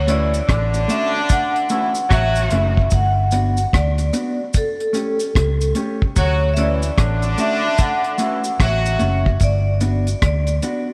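A ringing, metallic vibraphone melody played with medium mallets and a medium motor vibrato opens this roots reggae excerpt at 0.0 seconds, alongside a dark, round, foam-muted electric bass that sits up front. The laid-back groove moves at 74 BPM in 4/4 with a swung sixteenth-note feel, while a deep drum kit of hi-hat, tight kick and rim click gives a dry, smooth sound with a rolled-off top. A distant, roomy horn section with light vibrato supplies a second line before dropping out at 9.2 seconds, and a mellow, clean, compressed electric guitar accompanies underneath. A vintage, band-limited cabasa sits in the background. Tape echo colours the vibraphone, horns and guitar, and a moderate plate reverb surrounds the band as the chords cycle through Dmaj7, Gmaj7 and A7 in D major.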